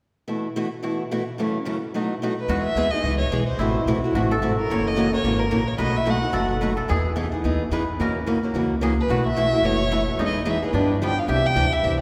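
A boxy, ladder-braced acoustic guitar opens at 0.3 seconds, picking chords up front in this charming, playful acoustic string swing tune in E major at a brisk 218 BPM. At about 2.5 seconds a woody, thumpy upright bass with gut strings joins pizzicato, alongside a mellow koto played with fingerpicks on a dry second line, while a soft-attacked bowed violin sings the melody with vibrato and portamento, pausing before returning at 9.0 seconds. A wet cathedral reverb gives the whole short passage the glow of a church or concert hall as the harmony drifts from Emaj9 through Am6 and G7 to a closing Cadd9.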